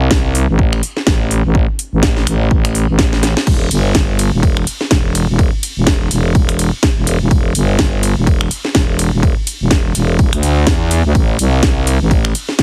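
Bouncy and gritty, this short bass house excerpt in E minor moves at 125 BPM in 4/4, with a 58% swing on the sixteenths giving it a loose shuffle. A growling FM bass sits up front from the first moment, thick and sine-based with a fast attack and sustained tone, roughened by tube saturation and pumping against the sidechain as it ranges from E1 to E2. An electronic kick drum enters at 0.1 seconds, layered and punchy with a tape-tinged body, alongside a house drum kit of cracking snare, metallic hi-hats, finger snaps, ride and crash cymbals. A drum fill breaks the groove briefly at 3.1 seconds before the pattern resumes. The mix is dry and heavily compressed, with a dense, radio-style sound that keeps the bass up front throughout.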